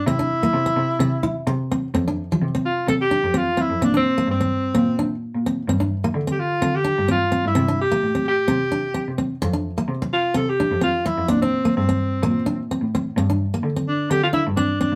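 A sunny, danceable highlife guitar band excerpt with a lightly swung 16th-note feel, led by a jazz-style alto saxophone solo, vibrato-laden and up front yet roomy, over a full-bodied fingerpicked jumbo steel-string acoustic guitar. A single bowed cello carries the bass line from a distance, expressive with vibrato and portamento. The group plays live together in a small room with moderate reverb, moving from an opening C and F5 through Gm and Bbadd9 to G5.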